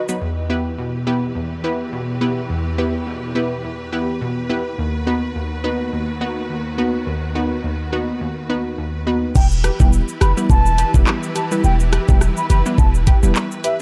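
This hypnotic, bouncy dancehall piece opens with a brief note from a mellow, wooden baroque flute over distant, lush bowed strings that pump with a sidechain effect, while a bright, warbling analog pluck with chorus carries the accompaniment and a short drum hit sounds at 0.1 seconds. The chords move from Em to B/D# before settling back on Em at 9.4 seconds, where the electronic island pop kit returns up front with a knocking kick, dark hats, handclaps, rim clicks, shaker and crash, joined by a deep, boomy 808-style bass. The flute also comes back at that point, its vibrato carried on a delay and its highs rolled off, within a dark, dry production.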